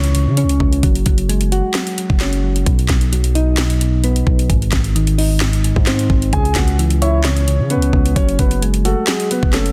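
Eerie and menacing, this trap excerpt in C# minor moves at 131 BPM with a half-time feel, built on soft, round electric-piano-like synth keys softened by chorus and a low-pass filter, a heavy, distorted 808-style bass, and an up-front trap kit of knocking kick, sharp snare, handclaps and metallic hi-hats. A barely audible impact opens the track, and at 6.3 seconds a dark, mellow grand piano with long sustain takes the melody, filtered and trailed by delay. The chords pass from C#m through F#sus2, B and G#, back to C#m and on to F#madd9 under light reverb and a dense, heavily limited master.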